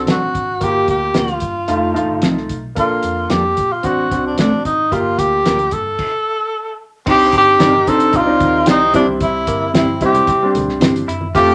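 A straight, danceable 4/4 groove drives this uptempo 1960s-style soul excerpt, built on a cloth-damped, thuddy drum kit, a round, punchy muted electric bass, an intimate grand piano with audible action noise, and mellow electric guitar stabs in the background. Up front, a breathy, close-miked tenor saxophone carries the melody with vibrato and a soft attack. After a stop at 6.0 seconds, a distant horn section adds a second line at 7.1 seconds, joined by a very quiet, twangy direct-recorded guitar riff and soft-handed congas, all set in a wet club reverb with a warm glow.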